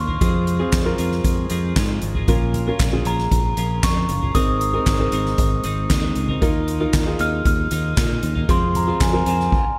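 Bittersweet and earnest, this short piano-driven pop excerpt in Bb minor moves at a straight 116 BPM in 4/4, with a mellow, bell-like glockenspiel played with rubber mallets carrying the melody over a woody upright piano with audible action noise, a twangy twelve-string electric guitar riff bathed in lush chorus, a round, punchy fingered electric bass, and an up-front soft-mallet drum kit with a fat snare, boomy kick, handclaps, hi-hat, toms and crash cymbal, all set in light small-room reverb as the chords pass through Fm, Bbm, Abadd9 and Ebsus2.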